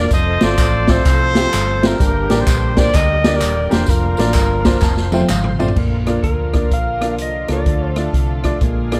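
Jubilant and hopeful, this uptempo gospel excerpt swings at 127 BPM in Bb major, with an up-front horn section carrying the melody with a smooth top until 5.3 s over a woody, clear upright piano that adds a fill, a bright, lightly overdriven tonewheel organ with slow rotary speaker sitting in the background, a round, punchy hollow-body electric bass, a swinging big-band drum kit with its own fill, and distant tambourine and handclaps, before soft, floating strings enter at 5.8 s and a clean lap steel guitar played with fingerpicks takes up the melody at 6.2 s, under light reverb.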